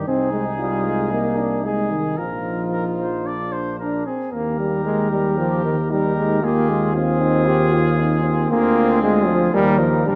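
All five brass voices of a classical quintet sound together from the start: a mellow trumpet carries the melody with light vibrato, set distant in the room, while a smooth-topped flugelhorn sits in the background on a second line. A dark trombone and a present tuba stand up front with accompaniment and bass, and a roomy French horn fills in behind, all moving at a stately, noble 114 BPM in Eb major. The recital hall lends a long, wet reverb to this brief 10.2-second passage, whose chords move through Ab/C, Bbsus4 and Bb7/D before settling on Eb.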